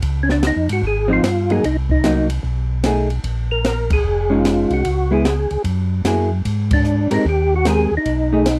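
A soul jazz organ trio opens with tonewheel organ bass lines, mellow and round with audible key click through a slow rotary speaker, alongside an acoustic drum kit of dark cymbals, a high-tuned snare and a boomy kick, swinging at 149 BPM in 4/4. At 0.2 seconds a second tonewheel organ takes the melody, its tone percussive with third harmonic percussion, chorus vibrato and the same slow rotary, sitting up front in a middle register. A clean, picked hollow-body electric guitar joins at 1.1 seconds to comp with a shadowy, vintage timbre. The harmony moves through rich chords such as Dbadd9, Bbm11, Gb9 and Abmaj9, and the band hits two accents together along the way. The sound is dry and close, like a 1970s studio session, giving this short, soulful fragment of a longer piece an intimate, swinging feel.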